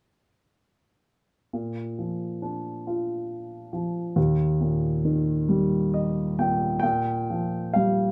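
A warm, polished grand piano plays alone, sitting present and up front with a light reverb around it. This is a brief, lyrical classical fragment cut from a longer piece, calm and peaceful in mood, moving at a slow 45 BPM in 6/8 in B-flat major, with the timing stretched and relaxed through rubato. The piano enters at 1.5 seconds and ranges from Eb2 up to G5, resting on B-flat harmony before shifting to E-flat at 4.2 seconds. A short fill at 5.5 seconds leads into a new section at 6.8 seconds, where the harmony settles back on B-flat. The tuning sits slightly below standard pitch, at A4 = 436 Hz, and the excerpt ends at 8.1 seconds.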